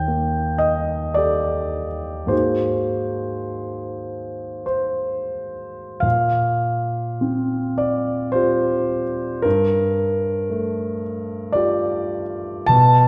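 A wet scoring-stage reverb with a 1.9-second decay surrounds this recording, placing the listener further back in the room while the concert grand still sounds clear and up front. It is a serene, dreamy impressionist solo piano piece in 3/4, moving slowly at 42 to 58 BPM with a free, rubato feel. The piano plays alone for the full 13.1 seconds, spanning Eb2 to A5, and its deep bass and natural tone carry easily through the room's ambience. The harmony drifts through colourful extended chords: Ebmaj7#11, then Ab9 at 2.3 seconds, Bbsus2 at 6.0 seconds, and Gm9 at 9.5 seconds. It is an excerpt cut from a longer work, heard in that resonant space.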